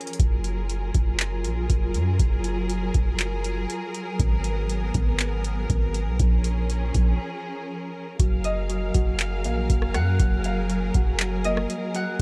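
This excerpt opens with a lush, bowed string section holding sustained chords under a booming analog drum machine, whose deep kick, metallic hi-hats, handclaps and rim clicks sit dry and up front, while the strings breathe with a sidechain pumping effect. A warm 808-style bass enters at 0.2 seconds, its sine tone deep and boomy with a fast attack that decays into a mellow tail. The piece is atmospheric cloud-rap in F# major at 120 BPM with a half-time feel, floating and blissful, moving from F#maj9 through G#m9 and A#m7 before returning to F#maj9 at 8.2 seconds. There is a break in the groove from 7.2 to 8.2 seconds, after which soft, round electric-piano-like synth keys begin arpeggios dressed in chorus and tape echo. A bright, ringing concert harp joins at 8.4 seconds with a fingerpicked high melody, also carried on tape echo, all set in a light reverb.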